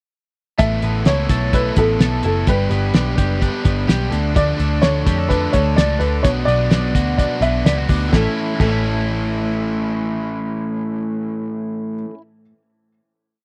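Jangly indie pop at 127 BPM in A mixolydian, youthful and breezy, with a worn, slightly detuned upright piano carrying a motif-based melody over a biting overdriven guitar strumming eighth-note barre chords and a twangy twelve-string electric guitar fingerpicking a roll pattern through spring reverb. A dark, foam-muted picked bass plays a rounded, melodic line with slides, while an up-front, cloth-damped drum kit with a fat snare, tight kick and dark cymbals drives a brisk indie backbeat before dropping out at 8.7 seconds. The short verse moves from Asus2 through G, Dm and Bm to a held A chord from 8.1 seconds, captured in a dry, close 1970s-style studio sound.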